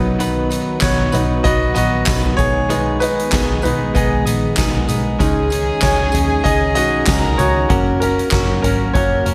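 Hopeful and warm, this short piano-driven pop passage, cut from a longer piece, moves with a gentle swing over a chord progression of B, G#m/B, C#sus2 and F#. A clear, polished baby grand sits up front, carrying the accompaniment and taking a solo that spans the whole passage, while a lush, warbling unison pad with chorus holds sustained chords in the background. A direct-recorded clean electric guitar plays a compressed, picked riff, and a dark, foam-muted electric bass gives a round low end. From 0.2 seconds a soft-mallet drum kit joins with a fat snare, boomy kick, hi-hat, toms and handclaps, alongside a jingly tambourine set back in the mix. At 5.2 seconds a studio violin section with light vibrato and a reedy gut-string tone adds a delayed second line, and the whole sits in light reverb with small room ambience.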